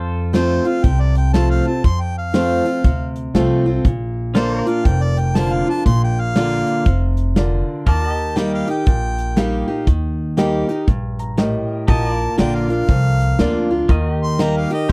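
Swung eighths at 120 BPM in 4/4 drive this sunny, down-home honky-tonk and classic country excerpt, where a punchy, up-front acoustic drum kit and a woody, thumpy pizzicato upright bass anchor a boxy picked steel-string acoustic guitar, a clear harmonica carries a solo over chords moving between F, Bb and Eb, a bright, twangy pedal steel guitar adds compressed sustained chords with volume swells, and a background upright piano with long sustain slips in a fill at 10.9 seconds, heard through a close, dry 1970s-style studio sound.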